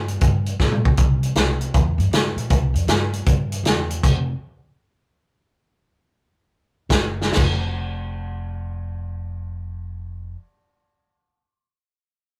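An electric blues shuffle fragment with a gritty, laid-back swing, played by a woody pizzicato upright bass on steel strings and a punchy, up-front vintage drum kit with a medium-tuned snare and a rolled-off top. After an early drum fill, the pair halts at 4.0 seconds as the tempo begins to slow, then resumes at 6.9 seconds with another brief fill before the bass carries on alone from 7.5 seconds. The rough rehearsal-room sound has light reverb and a saturated glow.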